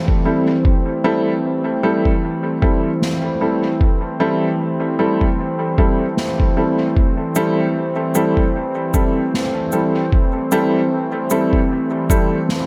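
A dreamy mix soaked in a long plate reverb gives this ambient dub passage, cut from a longer piece, a spacious, deep atmosphere. An analog pad holds a sustained Am7 chord throughout, its detuned sawtooth and sine tones warbling under chorus and roughened by a vintage 12-bit sampler grit. An electronic kick drum sits up front from the start, muffled and thumpy with a compressed, sampler-style weight. A woody, slightly detuned upright piano arrives at 0.3 seconds with stabs trailed by dub echo. At 3.0 seconds a fat acoustic snare drum and cabasa join, set in a big room with their own dub echo, while a swung sixteenth-note feel keeps the groove loose.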